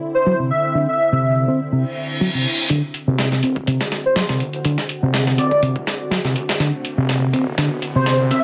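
A swirling, phased analog pad opens this gritty, swaggering breakbeat excerpt at 123 BPM, soon joined by an airy, dreamy lead with a telephone-like, tape-worn tone and delay, and by a round, punchy picked electric bass with tube saturation, both up front over a third-less D7 harmony that fills out to a full D7 at 2.7 seconds. A reverse cymbal and riser build from 1.9 seconds, and at 2.7 seconds a compressed, dusty sampler-style drum kit with a thumpy kick enters alongside a thick, menacing detuned saw bass in the background, while filter sweeps on the bass and lead drive the build-up. The drums play a fill from 6.6 seconds, all within a light reverb and a small room ambience on the kit.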